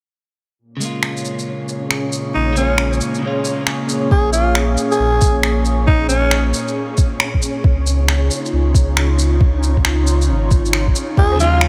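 An airy, breathy pad with chorus and sidechain pumping opens this wistful, rainy future garage excerpt on sustained chords, soon joined by a swung electronic shaker, finger snaps and woodblock in studio reverb, plus a compressed, picked electric guitar at the edge of break-up, roughened by vintage sampler grit and delay, while a flickering, grainy texture hovers very quietly behind. At 2.3 s a raspy alto saxophone with vibrato and delay takes the melody up front, and a deep, round sine sub bass pumps underneath. At 4.1 s a soft, tape-touched electronic kick arrives as the guitar drops out, with both guitar and saxophone returning briefly near the close.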